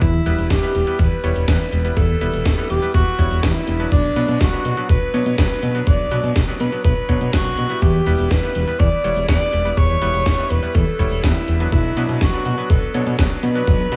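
A small digital room ambience surrounds this nostalgic, bittersweet italo disco excerpt at 123 BPM, cycling between Em and Bm. A breathy, whispered alto saxophone melody with tape echo sits up front over a fat, detuned analog bass with a filter sweep, a gritty overdriven electronic kick, and a house kit of cracking snare and metallic hi-hats in gated reverb, while bright, cutting electric grand piano stabs enter at 0.3 seconds.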